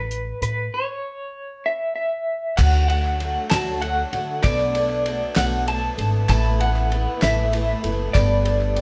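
This indie folk piece opens at 0.0 seconds with an electric guitar carrying the melody through a small old amp, its slightly broken-up, lo-fi tone shaded by tremolo, alongside a growly, woody pizzicato upright bass. Both sit up front, and a cloth-damped drum kit joins almost at once, with a fat snare, tight kick and dark cymbals. The mood is uplifting, in D major at a gentle 65 BPM counted in dotted quarters over a straight 6/8 lilt. At 2.6 seconds the arrangement builds: a picked twelve-string acoustic guitar brings a boxy, octave-doubled shimmer with audible finger squeak, and a lush bowed string section adds sustained chords with vibrato in the background. Crisp group handclaps and a jingly tambourine also enter here, tucked behind the band. Played live in one room with light reverb, the passage moves from Aadd9 through D, Bm7 and Asus2 before reaching Gadd9 as it cuts off.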